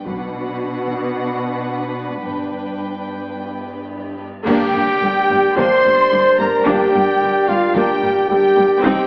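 A mellow French horn section holds sustained chords at the heart of this dramatic, heroic cinematic orchestral excerpt at 110 BPM, with a rich, expressive chamber violin section carrying the vibrato melody over a focused second violin line, lush violas, woody, distant cellos and lush double basses, while a cymbal swell, bright clash cymbals and concert bass drum sit dry in the background and saturated heavy-stick taiko sound briefly at the start, before the music turns to G minor at 4.5 s, where dark woodwinds, up-front trumpet stabs, returning taiko and a huge, very quiet impact join, all wrapped in a wet scoring-stage reverb and an AM radio sound.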